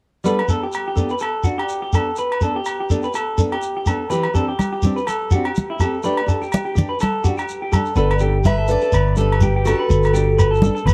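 This lightly reverberant cut from a longer highlife guitar band piece is danceable and warm, with a gentle swing. A fingerpicked nylon-string guitar lays down full-bodied accompaniment with audible finger squeak, while an electric guitar through a small old amp sits forward in the mix, playing twangy, slightly broken-up arpeggios with slapback echo. A grainy, mellow shekere rides up front beside ringing, band-limited agogo bells, and damped, thick-skinned congas arrive at 4.1 seconds, close and dry. The harmony moves through Gadd9, Cadd9 and Dsus4 before returning to Gadd9 at 8.0 seconds, where a dark, round hollow-body bass enters prominently. At 8.5 seconds a boxy, picked ladder-braced acoustic guitar adds a brief, warm melody.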